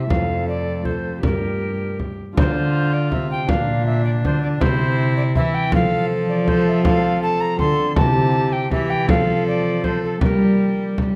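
Classical renaissance-style consort dance in a solemn, courtly 3/4 at 160 BPM, cut from a longer piece and moving through chords such as F, Gm, Dm, Bb and C. A distant wooden alto recorder carries the pure, tongued melody with chiff and vibrato, while a one-player viola adds a reedy gut-string second line and a dark, bowed cello sits up front on the bass with a smooth top. Behind them a mellow, ringing concert harp plucked with the thumb provides accompaniment, and a deep frame drum struck with hard hands enters at 0.1 s, all set in a moderate recital hall reverb.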